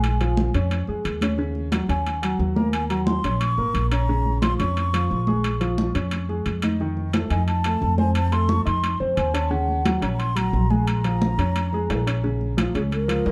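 A straight 4/4 pulse at 177 BPM drives this sultry, sophisticated Afro-Cuban jazz excerpt in Bb minor, where a pure, hollow concert flute with vibrato and a soft attack carries the melody through plate reverb and analog delay over clear concert grand piano chords moving from Bbm7 through F7, a woody, growly pizzicato upright bass sitting up front, soft-handed, high-tuned congas in the background and ringing, saturated metal-shell timbales, framed by a dark production and moderate studio reverb.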